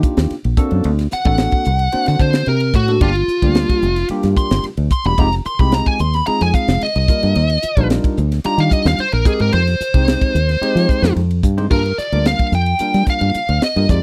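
Intense and slick, this electric jazz fusion cut moves at 110 BPM in a straight 4/4. A tight funk drum kit with a high-tuned snare and tight kick, and an up-front, foam-muted fingered bass drive it from the start, while a barky, bell-like tine electric piano adds bright, lush-chorused chords over a progression from Ebmaj7 through Gm7, Fm9 and Fm11. A smooth, overdriven, picked lead guitar comes in at 1.1 s and solos until 11.7 s, all captured in a dry, close 1970s-style studio sound with little reverb.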